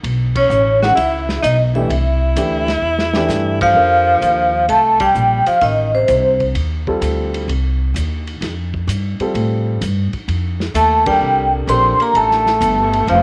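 Modal jazz with an open, spiritual mood, swinging at 129 BPM in 4/4 and settling into F mixolydian from 3.8 s, this short excerpt is cut from a longer piece. A woody, thumpy upright bass sits up front beside a muffled, lo-fi vintage drum kit of hi-hat, kick, ride and snare, while a dark, intimate baby grand piano with audible action noise comps from 0.8 s to 12.4 s. The ringing vibraphone leads with fast motor vibrato over a breathy tenor saxophone with scooped notes; both drop out between 6.4 s and 10.8 s, with band accents and a short drum fill punctuating the light small-room reverb.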